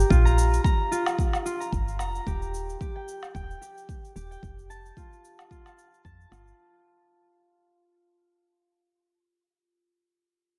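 Lightly reverberant and fading out across its first 6.6 seconds, this short cut from a longer organic downtempo piece moves at 111 BPM in 4/4 with a 16th-note swing, its hypnotic, mystical mood carried by a ringing, fingerpicked concert harp playing arpeggios through tape echo up front. A soft, round, woody FM bass with a fast attack and sidechain pumping sits beneath, alongside a deep electronic kick drum and a layered cabasa and woodblock part re-recorded in a small room. The chords move from Bb5 to Eb to F, and the harp rings on alone until 8.8 seconds after the bass and percussion stop.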